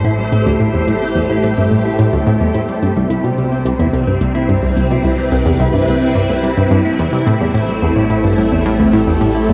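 Ambient, sequencer-driven space music at 108 BPM in A minor, hypnotic and expansive, where a bright, up-front analog pluck riff with chorus, 12-bit grit and delay meets a swirling, phased string machine holding sustained chords, while a dark, clean electric guitar plays filtered arpeggios in the background, a fat, saturated analog bass fades in beneath, and overdriven electronic hi-hat and congas with metallic hats sit far back, all steeped in a huge reverb and the warble of worn cassette tape.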